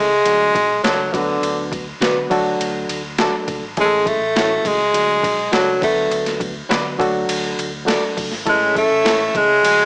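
A straight 4/4 pulse at 102 BPM drives this uplifting snippet of uptempo 1960s-style soul, where a gritty, pitched-down boom bap sampler-style kit enters at 0.3 s with a thumpy kick, high-tuned snare, hi-hat and ride, overdriven and re-recorded in a large room, under a round, amped fingered bass in the background. Up front, a breathy, close-miked tenor saxophone carries the melody with scooped notes in a jazz style, shadowed by a very quiet, metallic vibraphone line with ringing medium hard mallets, while a bright, barky reed electric piano, lightly overdriven through its built-in speakers, comps over the D, Bm/D and A changes and a slightly broken-up guitar through a small old amp adds picked stabs from 0.8 s. At 8.5 s a clear, earthy chamber violin section slips in behind with light vibrato, and the whole cut sits in light reverb with a small speaker sound.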